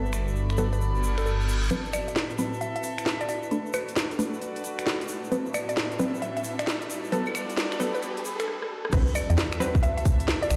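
A dark, rumbling detuned saw bass sits up front in this soulful, moody two-step UK garage excerpt at 133 BPM in A dorian, swung on the sixteenths. It plays for the opening 1.7 seconds, drops out through a long build-up over Bm7 and Am69 chords, and returns at the drop at 8.9 seconds alongside a tight, tape-toned electronic kick. A garage kit with a cracking snare, crisp hats, claves, finger snaps, rim clicks and crash drives the groove, with a grainy egg shaker in the background. A woody, round mallet-like synth pluck carries the melody through chorus, phaser, cassette tape and digital delay, while punchy detuned chord stabs take a filter sweep during the build. Beneath them, an airy, breathy pad and a reedy gut-string studio section with light vibrato both pump with the sidechain. A reverse cymbal and riser rise in the background toward a drum fill, all set in a lush hall reverb that sounds replayed through a big system in a bare room.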